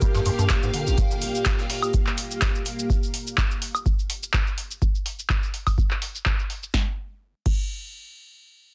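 A lightly swung 4/4 groove in sixteenths drives this hypnotic, raw acid house passage, cut from a longer piece and anchored by a deep, analog electronic kick sitting up front. An electro analog drum machine adds punchy snare, metallic hats, handclaps, shaker, woodblock and crash, with a short room on its snare, clap and hats and a low-pass filter dulling its top end. Behind it, a gritty, pitched-up breakbeat sampler kit of hi-hat, shaker and snare sits in the background, compressed and high-passed, and drops out at 2.8 seconds. A squelchy, resonant square-wave acid bass plays a brief riff with a filter sweep, phaser, chorus, 12-bit sampler grit, dub echo and sidechain pumping, stopping at 1.0 second. A lush, vintage string machine holds mellow sawtooth chords with a sub octave, moving notch, phaser and ensemble chorus over a Gm7 harmony until 2.9 seconds. From 6.7 seconds the harmony falls away into a second section carried only by the drums, all in a modest small room under a dense, heavily limited master.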